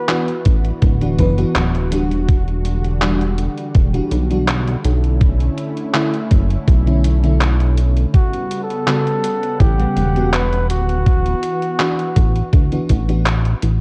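A thumpy, up-front electronic kick and a detuned 8-bit drum machine playing handclaps and hi-hat set a straight 4/4 pulse for this faded, dreamy vaporwave fragment, where a glossy chorused synth bass sits forward beneath a thick, warbling unison pad and a chorus-soaked FM electric piano with analog delay moving through D69, Em9, Bm11 and A13, while a mellow flugelhorn with vibrato and tape echo sounds briefly at the opening and returns at 8.1 s, the whole mix carrying a dark cassette-tape tone, light reverb and digital ambience.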